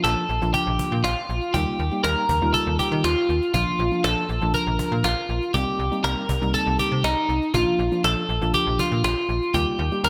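Driving and nocturnal, this synth-pop excerpt moves at 120 BPM in a straight 4/4, cycling through Bb, Ebadd9 and Cm7 across its 10.1 seconds. An up-front, compressed twelve-string electric guitar carries the picked melody through lush chorus and digital delay, while a worn, slightly out-of-tune tine electric piano, also chorused, fills in the accompaniment. A snappy, slap-like FM bass with a metallic attack and a snappy cajon with snares drive things along, all set in a moderate plate reverb with a bright, 1980s-style digital sheen.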